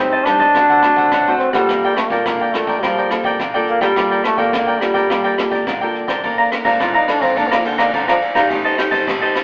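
A clear, vintage-toned trombone carries the melody up front in this bittersweet yet lively samba-choro fragment, cut from a longer piece, over a bright, crisp picked cavaquinho, a softer fingerpicked classical nylon-string guitar and a brush drum kit with dark cymbals and a punchy kick that enters at 0.3 seconds, all set in a stone-room echo with a thin telephone-like sound, as the trombone turns soloist at 6.2 seconds and falls silent at 8.2 seconds.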